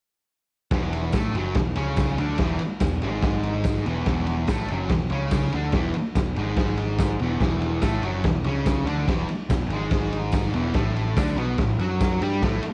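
Garage rock with a rowdy, swaggering mood, this short cut from a longer piece is built on a thick fuzz guitar riff, double-tracked and up front, over a growling picked electric bass with overdrive and a raw garage drum kit with a punchy kick, saturated cassette grit and a rolled-off top, while a jingly tambourine sits in the background from 1.1 seconds. The music holds on an E chord before moving to A5 at 10.7 seconds, and it all carries the rough, lightly reverberant sound of a home recording on cassette.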